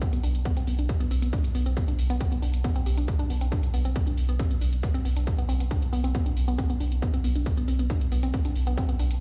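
A saturated sub bass sits up front, deep and thick, with a triangle-like tone, a fast attack and sustained notes held on B1 from 0.2 seconds, warmed by tube saturation and rounded by a low-pass filter as sidechain pumping pulls it in rhythm with the beat. This is a relentless, dark slice of driving peak-time techno in a straight four, cut from a longer piece and holding on a single B minor chord throughout. A heavy, layered electronic kick drum also sits up front, tape-warm and re-recorded in a small room, while a quieter electronic hi-hat with an analog character runs alongside it. A woody, wave-folded pluck carries the riff between B3 and G4, its percussive, organic attack and short decay shaped by a noise layer, a filter sweep and a moving notch, then thickened with chorus, digital delay and sidechain pumping. The whole track comes across as though played on a big sound system in a bare room, with stone room reverb adding a hard, stony ambience.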